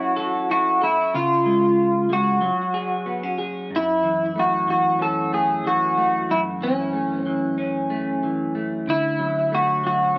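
Indie pop with a hazy, lonely mood and a gentle swung lilt, this fragment pairs two up-front electric guitars played through a small old amp: a bright, twangy picked lead carries the melody through analog chorus and digital delay, while a slightly broken-up, compressed picked accompaniment adds lush chorus and vibrato beneath it, all bathed in a wet spring reverb as the chords move from F#m7 through C# and F#sus2 before settling on Dmaj7 near 8.9 seconds.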